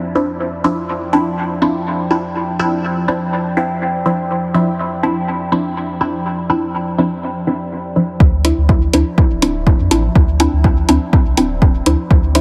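Muted, detuned dub chord stabs with phaser, cassette-tape wear and dub echo sit up front from the start of this hazy, cavernous dub techno excerpt at 123 BPM in D minor, pumping against a dark, wave-folded ambient pad with chorus and gritty 12-bit sampler texture on a Dm9 chord, until a round sine sub bass and a punchy, layered kick arrive at 8.2 s, joined at 8.4 s by an overdriven analog hi-hat, all set in light reverb with a heavily compressed radio sound.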